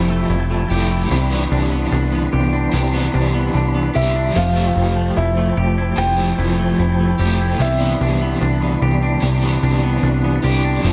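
A straight 4/4 pulse at 74 BPM carries this blissful, ethereal dream pop excerpt in C major, anchored by a punchy, up-front analog bass whose sawtooth and square-wave tones pluck with a fast attack and decay in a funky way. An overdriven semi-hollow guitar picks a hollow-bodied accompaniment through tremolo, lush chorus and analog delay, while a bright, twangy clean electric guitar plays picked arpeggios with subtle chorus and its own delay. In the background, a soft, flute-like tonewheel organ holds sustained chords, shimmering with chorus vibrato and a fast rotary speaker. From 4.0 to 8.4 seconds, a felt-muted upright piano offers a brief, intimate melody high in its range, its vintage tone carrying audible action noise and a trail of analog delay. The harmony drifts between Fmaj9 and Cmaj9 in a light reverb and an echo-heavy mix that gives the whole piece a floating, hazy glow.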